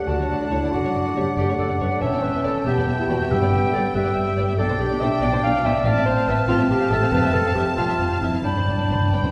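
A bright, airy silver flute, close and tongued with vibrato, rides high beside a lush symphonic violin section carrying the melody, while a warm clarinet, a distant oboe and a dark bassoon weave second lines and accompaniment in this spirited, cheerful classical passage cut from a longer piece. Underneath, a chamber violin section sits in the background, a very quiet studio viola section fills in, and rich bowed cellos and double basses anchor the bass in a rubato 6/8. Timpani with calf heads and medium mallets strike at 3.3 s and return with a fill at 8.4 s, all set back in a reverberant recital hall.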